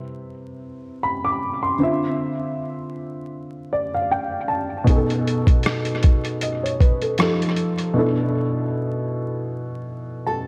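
A dark, woody upright piano with audible action noise and a worn, slightly detuned tone carries this cosy, nostalgic lo-fi hip hop excerpt through cassette-tape colour and tape echo. At 4.9 seconds a muffled, pitched-down sampler-style kit of thumpy kick, hi-hat and rim click joins with overdrive and tape echo, then falls away as a break opens at 8.0 seconds, before a full-bodied, fingerpicked nylon-string guitar touches an A4 with a finger squeak at 10.3 seconds, inside an echo-heavy mix of light reverb and vinyl crackle.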